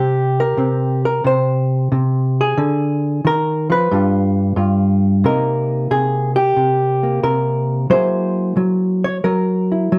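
Closely miked with light reverb, this cool, smoky solo jazz excerpt features a dark, clean, fingered hollow-body electric guitar, compressed and up front, swinging in 4/4 over Ddim, G7, Cm7 and F#9 chords, with its first chord arriving at 2.6 seconds.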